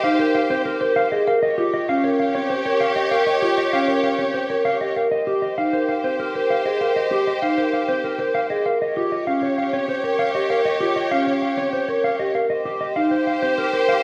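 A propulsive 6/4 pulse at 195 BPM with a straight feel drives this bright, minimalist classical pattern piece in Ab major, cut from a longer work, where a woody, round marimba with soft mallets spins arpeggios under a clean, dark-toned fingered electric guitar melody that sits up front. A lush, bowed studio string section holds sustained chords with vibrato, moving between Abmaj9 and Eb9 harmonies. The whole 14-second passage sits in a recital hall reverb with a 1.3-second decay.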